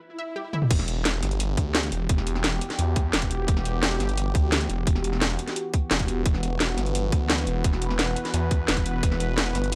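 The recording sits in a digital ambience, with the kick, kit and bass pushed up front. This short cut from a longer piece is dark technical drum and bass in E minor, running at 173 BPM in a straight 4/4, with an aggressive, futuristic mood. It opens on a brief break where an electronic swell plays as a sound effect and an analog pluck plays bright, round arpeggios, its detuned tone carrying chorus, tape echo and sidechain pumping. The drum and bass kit comes in with a fill at 0.5 seconds, and the drop lands at 0.7 seconds. There, an overdriven, tight electronic kick drives the beat beside a kit of cracking snare, metallic hats, toms and crash cymbal, each low-pass filtered and re-recorded in a small room. Underneath, a snarling distorted saw bass growls with tube saturation, a moving notch and sidechain pumping, while a sweeping resonant pad holds sustained chords on Em, its sawtooth tone evolving through a filter swell over a slow attack, with chorus and pumping of its own.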